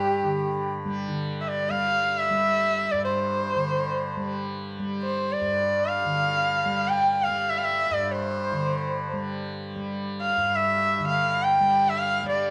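A solemn, introspective Hindustani excerpt in free time sets a clear, boxy bowed sarangi up front, gliding with light vibrato and portamento through raga Bhimpalasi on G between G4 and G5, its sympathetic strings ringing, over a softly plucked, buzzing tanpura drone shimmering beneath from G2 to G3 for the full 12.5 seconds, all in a dark production with moderate recital-hall reverb.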